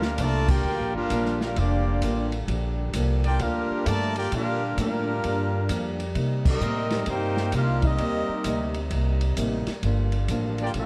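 Close, detailed microphones and light reverb give this short big band swing passage an intimate, sultry feel, swinging at 131 BPM in G minor. A tight trumpet section carries the melody with a soft attack and smooth top, while a trombone section with vibrato sings a second line beneath it, and a second trombone section holds sustained chords with light vibrato in the background. Up front, the pizzicato upright bass sounds woody and growly, and a dark, boomy drum kit with dark cymbals and a rolled-off top plays from a small room. A boxy parlour steel-string acoustic guitar, fingerpicked with audible finger squeak, sits in the background as accompaniment. The band hits accents at 0.4 and 6.4 seconds as the harmony moves from Gm7 to Cm7 and back to Gm7, all within a fragment cut from a longer piece.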